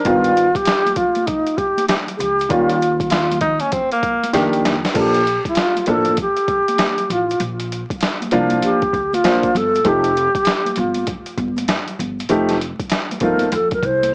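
A relaxed, smooth jazz-hop excerpt opens on an intimate upright piano with audible action noise and a gritty, compressed boom bap drum kit with a thumpy kick, joined at once by woody pizzicato upright bass, very quiet tube shaker and congas, and an airy, close-miked alto flute carrying the melody through an analog delay. A breathy tenor saxophone with subtone and scooped notes slips in briefly from 3.1 to 4.3 seconds, a drum fill follows, and at 5.0 seconds the flute takes a solo with unsteady vibrato. The mix sounds like worn, warbling old cassette tape with vinyl crackle and pitch drift heard through a small speaker, set in moderate studio reverb.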